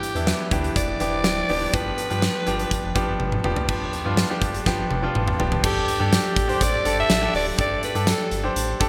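A straight 4/4 groove at 123 BPM drives this short, nostalgic yet urgent slice of 1980s-style pop. A huge arena drum kit sits up front, with a punchy kick, fat snare, bright cymbals, hi-hat, tambourine and toms, plus drum fills around 3.2 seconds and again before the final section. A deep, sine-like sub bass with an added octave holds the bottom with full, sustained notes, while a brilliant, polished concert grand piano plays accompaniment over chords moving from Em7 to G7 and then Gsus2. On top, a raspy, gritty alto saxophone carries the melody with scooped notes and vibrato, treated with digital delay. At 5.6 seconds a very quiet horn section adds clear, smooth-topped stabs, and the whole mix sits in a lush hall reverb with bright digital 1980s-style production.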